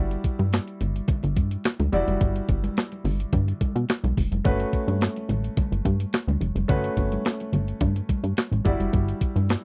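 A plucky analog bass sits up front with a punchy, funky bite, its detuned, wave-folded tone snapping with a fast attack and mellowing as it decays. Beside it, a crisp 8-bit digital drum machine with a thumpy kick, snare, hi-hat and handclaps carries a tape-warm, sampler-style character, while a baby grand piano with short sustain moves from Em9 to Gmaj9#11 and back, and thick-skinned congas murmur in the background from 0.4 seconds. This danceable, late-night slice of early-eighties boogie funk sounds dry and close, cut from a longer piece.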